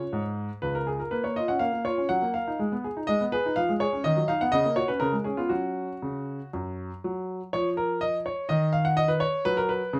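Classical-period piano sonatina cut from a longer piece, graceful and elegant in a rubato 3/4, played by a clear baby grand piano alone, intimate and up front with audible action noise, moving through harmonies from C#2 to F#5 under light reverb before shifting to a new section at 7.0 seconds that opens on a rootless D#m9 and moves to D#m7.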